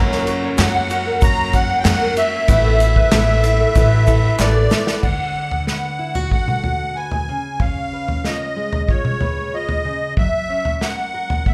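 A straight 4/4 pulse at 94 BPM drives this anthemic, nostalgic indie folk excerpt in D major, heard as a live club gig with light reverb. An up-front unplugged drum kit with a punchy kick and dark cymbals, plus a woody pizzicato upright bass, anchor the opening, while a clear upright piano, a boxy picked ladder-braced acoustic guitar, a bright thumb-plucked ukulele, a grainy tube shaker and hollow group handclaps sit in the background and a reedy, shimmering musette accordion carries the melody from 0.6 seconds. Slapback echo colors the accordion, piano, guitars and ukulele, and after piano and drum fills a new section begins at 5.0 seconds, where a full-bodied fingerpicked steel-string guitar with finger squeak takes over the accompaniment beside the accordion and drums.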